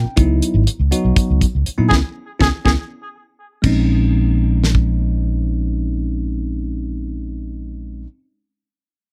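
A dry, close recording with little room sound opens this short, driving cut from a longer piece of electric jazz fusion, moving at 243 BPM in eighths in a 7/8 metre with a straight, intense feel. A bell-like, bright tine electric piano plays the accompaniment from the first moment, starting with a fill and colored by phaser and plate reverb. Beneath it, a fretless electric bass sounds dark, round and punchy, thickened by ensemble chorus. A damped 70s drum kit with dark cymbals, a fat snare and a tight kick enters at 0.2 seconds and stops at 4.9 seconds. The band hits an accent from 1.9 seconds, where a cup-muted trumpet, soft and veiled, sounds a brief jazz-style phrase on Ab4 with plate reverb and analog delay. A drum fill then runs from 2.9 to 3.6 seconds, when the harmony moves from Dbm11 to Bbm11.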